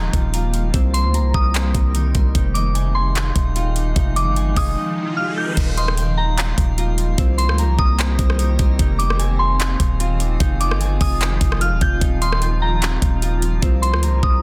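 Atmospheric cloud-rap hip hop at 149 BPM in a half-time feel, this spacious, ethereal excerpt floats a soft, warbling FM synth bell melody with chorus, phaser and delay over a cloudy, sidechain-pumped granular pad, fingerpicked Celtic harp arpeggios, a faint glassy harmonics texture in the background, a deep, mellow sine 808 bass up front and a large-room trap kit of knocking kick, metallic hats, claps, rim clicks, crash and a softly clipped snare, while an electronic riser at 4.7 seconds leads into a short break ending at 5.6 seconds, all cycling through Ebadd9, Cm7 and Fm7 in a dense, heavily limited mix.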